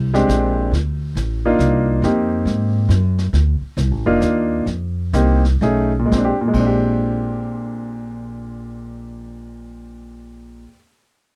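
Sophisticated and swinging, this short jazz piano trio excerpt moves in a lilting 3/4 at 117-138 BPM in Bb mixolydian, with a slowing down from 3.3 to 6.1 seconds before a new section arrives at 6.1 seconds. A clear, up-front baby grand with short sustain carries the melody over woody pizzicato upright bass, while a brushed drum kit with dark cymbals, a medium-tuned snare and a boomy kick sits further back and drops out at 6.7 seconds. The dry, close sound recalls a 1970s studio, touched by light reverb, with harmony drifting through chords like Bb13, Cm11, F7sus4 and Dm7.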